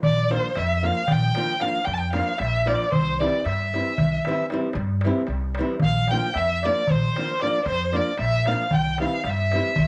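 An expressive bowed violin with vibrato and portamento sings the melody up front in this restless, bittersweet Balkan wedding-band excerpt in 11/8 at 228 BPM (eighths), moving between Bb and C over a reedy, boxy accordion second line, fingerpicked flamenco guitar, a woody pizzicato upright bass and a crisp, distant metal-shell darbuka, with cassette-tape colouring on the violin, accordion and guitar in a moderately reverberant home recording.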